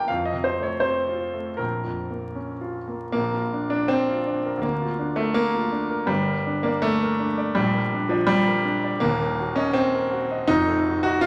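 Vinyl crackle sits over a recital hall reverb, framing a clear, intimate grand piano placed up front, where the action noise can be heard and each note's short sustain dies away naturally. This passionate, bittersweet romantic character piece for solo piano moves in a flexible rubato two-beat metre, spanning from deep bass up to the upper middle register. After its brief opening section, a second section begins at 3.1 s and runs to the end of the fragment at 11.3 s.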